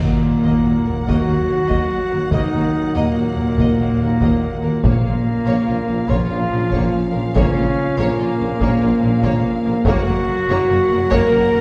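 Driven by a rolling 12/8 pulse at 96 BPM in Eb minor, this relentless, heroic slice of epic orchestral film score opens with a hard-mallet timpani hit that returns at 4.8 s, while a heavy-stick taiko ensemble enters at 1.1 s, as lush vibrato violins carry the melody and a background second line over a very quiet, portamento-tinged viola accompaniment. Dark French horns and mellow trombones sustain chords, a soft-attack vintage trumpet adds stabs, and a bass of focused cellos, woody double basses and a very quiet tuba anchors the progression from Ebm to Bbm to Gb, all set back in a reverberant recital hall.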